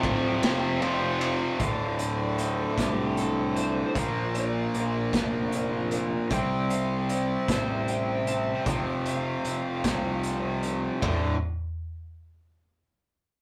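This is a rough rehearsal-room recording, soaked in a short, wet small-room reverb, of dark and angsty quiet-loud alternative rock in a straight 6/8. Up front, a raw garage drum kit with a punchy kick and a medium-tuned snare fills the pumping room, saturated and gritty with a rolled-off top, while a fuzzed, growly picked bass underpins the riffs. A bright, tight distorted guitar drives the main riff in the foreground throughout, joined at first by a second tight guitar and a double-tracked high-gain guitar in the background that drop out at 1.6 seconds. From there until 6.3 seconds, a very quiet, lo-fi guitar through a small old amp picks slightly broken-up arpeggios. Over it all, a lead guitar through a small cranked amp sings an overdriven melody with analog delay from the back of the mix until 10.2 seconds, as the chords move from Dm through Bb toward power chords in this excerpt from a longer piece.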